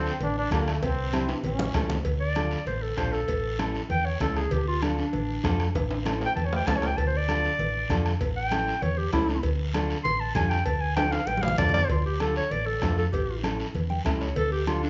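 A reverberant, top-muffled live-room sound frames this driving, passionate cumbia at 195 BPM in D harmonic minor, where a bright, punchy trombone solos with vibrato for its first 1.9 seconds before a smooth, subtoned clarinet takes the lead at 2.2 seconds with light vibrato and scooped jazz-style notes, over a mellow, clean fingered electric guitar that adds a short fill at 13.7 seconds, a dark, round hollow-body short-scale bass up front, a raspy guiro, ringing hard-handed congas, ringing cowbell and timbales, a soft-beater vintage bombo in the background, and recurring drum fills.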